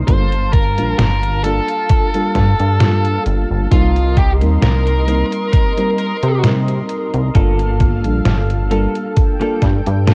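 Hazy and woozy, this vaporwave excerpt drifts at 66 BPM in G minor through Gm9 and Cm7, with a round FM electric piano under lush chorus and cassette tape, a thick, airy detuned unison pad, a glossy, nasal chorused synth bass, a thumpy electronic kick and a detuned 8-bit drum machine's fat snare and hi-hat in studio reverb, a distorted high-gain lead guitar with tape echo carrying the melody until 6.4 s, a clean, compressed electric guitar riff with analog chorus and delay entering at 7.3 s, and worn, warbling old-tape ambience with pitch drift.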